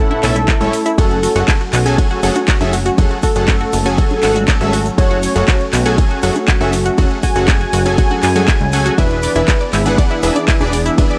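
A punchy electronic kick sits up front from 0.5 s, driving a straight 4/4 groove at 120 BPM alongside a house drum kit of handclaps, metallic hi-hats and ride cymbal, background congas in a small room and a grainy, bright tube shaker. This bittersweet, emotional progressive house excerpt in F# minor moves from A to F#madd9 and then E7, carried by a funky sawtooth bass with ring modulation, lush detuned pluck arpeggios, delayed supersaw stabs and a smooth chorused pad in the background, with the bass, plucks, stabs and pad all pumping to the sidechain. Above them, a thick, bold unison lead with a sub octave and vibrato sings the melody with delay until 9.6 s, the whole mix sitting in light reverb.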